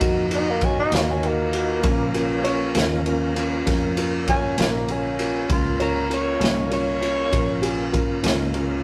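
A growling tenor saxophone takes the solo from 0.3 s, its breathy subtone carrying raspy edges, vibrato and scooped notes in a mellow jazz style. This is a smoky, soulful slow blues in Bb minor at 66 BPM in 12/8, an excerpt cut from a longer piece, moving from Ebm to Bbm at 1.8 s. Up front, a raw garage drum kit plays kick, snare and ride with a punchy, saturated sound in a pumping small room. A boxy baby grand piano accompanies with dark, intimate tone and audible action noise, while a foam-muted, round vintage electric bass holds down the low end. An overdriven tonewheel organ sits in the background with thick sustained chords through a slow rotary speaker and chorus vibrato, and a very quiet, slightly broken-up electric guitar, picked and compressed through a small old amp, joins at 0.9 s. Light reverb colours the rough rehearsal-room recording.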